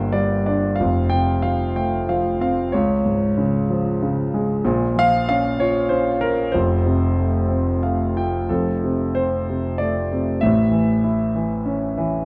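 A concert grand piano opens alone on a G minor chord, setting a lyrical, classical mood that feels sunny and hopeful. The piece moves in 3/4 at around 94 BPM in F major, with a rubato feel that lets the time stretch, and the instrument is tuned to A4 = 441 Hz. The piano spans F1 to G5, its deep bass and polished, present tone placed up front in a moderate concert hall reverb. The harmony passes through F, D-flat and B-flat minor before returning to F, and a short piano fill at 7.5 seconds leads into a new section at 8.5 seconds that reaches an A chord. The dark, warm production rounds out this brief passage taken from a longer piece.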